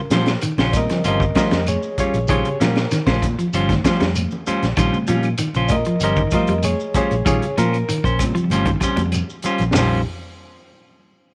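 A barky, reedy electric piano leads this excerpt of driving, hypnotic afrobeat, soloing from the first second through 9.7 seconds with light overdrive and a fast tremolo that gives its bright tone a buzzing shimmer over a Bbm69 chord in Bb dorian at 97 BPM in straight 4/4. Beneath it, two clean, picked electric guitars split the work: a dark one plays low arpeggios treated with tremolo and slapback echo, while an up-front partner adds stabs higher in the range. A round, punchy fingered bass sits slightly above the rest in level, anchoring the groove with an amped, warm tone. The breakbeat kit sounds crunchy and saturated, with a punchy kick, high-tuned snare and rolled-off top, and it plays a fill from 8.5 to 9.7 seconds. Very quiet, distant congas with hard hands, a grainy shekere in the background and woody, band-limited claves fill out the percussion, all wrapped in small room ambience.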